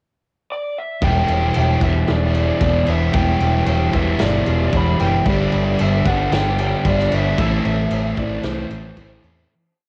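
A dark, lo-fi lead guitar through a small cranked amp opens at 0.5 s with a motif-based melody steeped in overdrive, cassette tape and analog delay, and at 1.0 s this wistful, hazy shoegaze and dream pop piece fills out with a thick fuzz guitar's distorted chords up front under lush chorus, a warm overdriven electric guitar ringing in the background through reverse reverb, a bright, very quiet direct-recorded clean guitar picking compressed arpeggios, a round, foam-muted vintage bass driving eighth notes, and a loose, gritty indie drum kit with a punchy kick and half big groove, set in small-room home cassette ambience before a fade-out from 7.4 s.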